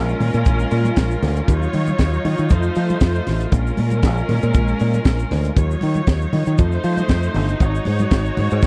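Disco with a glamorous, sultry mood, this short excerpt is cut from a longer piece and rides a straight 4/4 groove. A tight funk drum kit sits up front with a dry, high-tuned snare, a tight kick and hi-hat, while a growly, punchy fingered electric bass shares the foreground with a direct, electric tone. A clear studio string section holds lush, bowed sustained chords with vibrato and a smooth top, moving through Bbm7, Ebm9 and F7 before landing on Ab7sus4 at 7.6 seconds. Very quiet congas add a bright, damped thin-skin texture, and a grainy egg shaker ticks away in the background. The whole recording has a dry, close 1970s-style studio sound with small room ambience.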